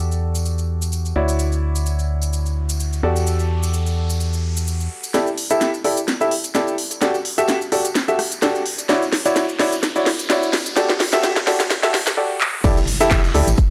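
Swung sixteenths drive this energetic, soulful piano house cut at 128 BPM in 4/4, set in E dorian and moving between Em11, Dmaj9 and A7sus4 chords. A clear, worn concert grand carries the riff up front with short sustain and deep lows, pumping against the sidechain through a low-pass filter. A hollow, organ-like FM bass with a dark, percussive attack pumps beneath it until 4.9 seconds. A house kit of cracking snare, crisp hats, handclaps, rim clicks, shaker and crash holds the groove throughout, with a close, dry tambourine tucked in the background. From 5.1 seconds a build-up brings a filter sweep on the piano, drum fills and a rising effect. At 12.6 seconds the drop lands with an impact, the bass returns, a punchy electronic kick pushes to the front, and a very quiet gated kit adds a ride cymbal and a medium-tuned snare in a bright stone room.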